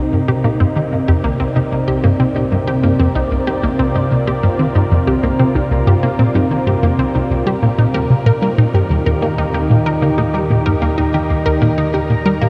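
A lush, thick unison pad holds sustained chords from the start, joined at once by a tight, driving sequenced synth riff with chorus and delay, bright warbling pluck arpeggios under a filter sweep and echoing delay, and a very quiet, round, deep analog bass, in this cosmic, mysterious fragment of ambient, sequencer-driven space music at 94 BPM in C minor. From 0.1 seconds a faint, breathy, wind-like tuned noise texture drifts in on a single high note, while the harmony moves from Cm7 to Eb at 8.3 seconds. Everything sits in a dreamy mix soaked in a huge, wet reverb with a cassette tape character.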